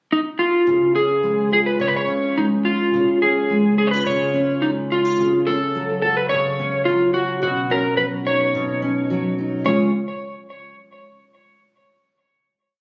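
A slightly broken-up electric slide guitar opens this heartfelt, carefree acoustic pop piece at 0.1 seconds with a motif-based melody bathed in plate reverb and delay, joined at 0.7 seconds by a full-bodied, double-tracked steel-string acoustic guitar playing alternating-bass fingerpicking at a straight 107 BPM in Db mixolydian, moving through Db, Gbm/Db and Cbadd9 before landing on a final Db chord at 9.6 seconds, all captured on a phone in a club-like room with compression and a dull, rolled-off top end.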